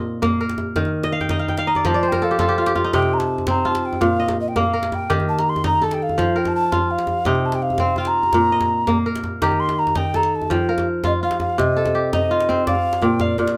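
An up-front, ringing kora spins crisp fingerpicked arpeggios from the start of this flowing, hypnotic West African traditional excerpt in 12/8 at 111 BPM in C dorian, joined by a tight, cracking djembe played with hard hands and, from 1.7 s, a distant, breathy clay alto ocarina carrying an expressive, tongued melody with vibrato, the whole heard in a light reverb as the music moves into a new section at 11.6 s.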